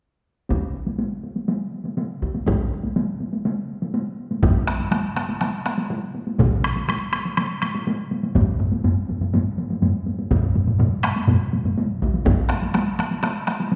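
Four up-front taiko ensemble parts drive this ceremonial, straight 4/4 Japanese traditional drumming at 122 BPM, two entering at 0.5 seconds, one struck with hard sticks for a vintage, band-limited tone and one with heavy sticks heard close, before a dry, close heavy-stick part joins at 4.4 seconds and a hard-stick part with a live-room sound arrives at 6.4 seconds, the whole passage, cut from a longer piece, ringing in a wet recital-hall reverb.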